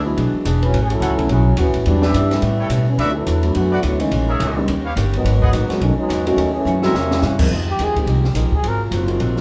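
A dark, vintage-sounding trombone section with soft attacks and vibrato carries the opening of this sultry, dramatic big band swing excerpt, standing out over a brisk, swung 4/4 groove. Close-miked trumpets with light vibrato add clear, tight stabs from 1.0 seconds, while a thumpy, woody upright bass played pizzicato on gut strings sits up front beneath them. Behind the horns, a warm concert grand piano with audible action noise and a clean, compressed hollow-body archtop guitar fill in the harmony. An open acoustic drum kit with a high-tuned snare, boomy kick, hi-hat, ride and crash drives the swing and plays a fill just before 7.5 seconds, when a second trombone section, clear and set in the background, takes over with sustained chords. Over them a mellow solo trumpet enters at 7.7 seconds with scooped notes and light vibrato, all wrapped in a club-like reverb that places the band further back in the room.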